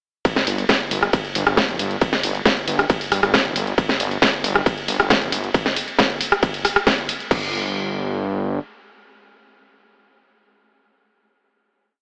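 Heard through a thin, AM-radio filter with a light touch of reverb, this short, complete piece is driving peak-time techno at 136 BPM in a straight 4/4, dark and relentless from the first beat. It opens straight into a drop, where a distorted, layered electronic kick pounds out a four-on-the-floor pulse. Up front, a programmed techno kit adds a cracking backbeat snare, closed and half-open hats with a warm tone, ride, rim click and crash, with the hats and cymbals pumping under sidechain. A thick, detuned sawtooth bass with a menacing, beating character plays off-beat notes low in the register, also pumping against the kick. The drums stop at 7.4 seconds, and the bass carries on alone into the final note section, ending at 8.6 seconds.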